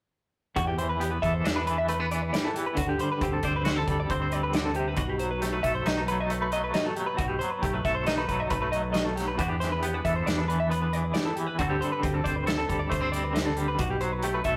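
Intricate and restless, this fragment of a longer piece blends math rock with midwest emo in a straight 5/4 meter, all four parts playing together from 0.6 to 14.6 seconds. An up-front, twangy electric guitar carries the clean, picked, compressed accompaniment with a tremolo effect. Above it, a semi-hollow electric guitar spins clean, picked arpeggios with a dark, scooped, hollow-body tone. A fingered electric bass, sounding direct and amped, holds the low end, while a loose indie drum kit adds hi-hat, a tight kick and a medium-tuned snare in a small, pumping room. The harmony circles through Em7, D7sus4 and B7b13 before returning to Em7. The whole recording has the rough feel of a rehearsal room, with warm saturation and moderate studio reverb.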